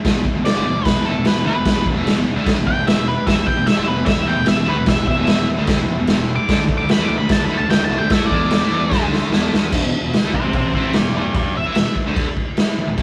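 A straight 4/4 garage rock groove at 149 BPM in E minor drives this menacing, swaggering excerpt, with a raw, punchy drum kit up front in a bright stone room, a growling overdriven bass in the background, a double-tracked fuzz guitar riff, a dark octave-fuzz lead soloing from 0.5 seconds, a mellow vintage combo organ holding spring-reverbed chords from 3.3 to 9.7 seconds, and a drum fill leading into a new section at 9.7 seconds, all captured as a rough, tube-saturated rehearsal-room recording.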